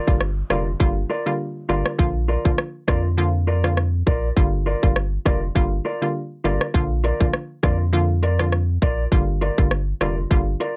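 A swung dancehall groove of tight electronic kick, metallic hi-hats and rim clicks sits up front with a round, deep sine sub bass in this sultry, tough excerpt, which opens in a break running to 6.7 seconds. A hollow, detuned square-wave pluck with ring modulation, a filter sweep and chorus bounces through the Gm7 and Bb changes, while a dark, clean, fingered electric guitar plays compressed arpeggios above it, and a very quiet downlifter sounds only in the first 2.0 seconds. The dry, gritty cassette-tape sound is dull at the top, with little reverb.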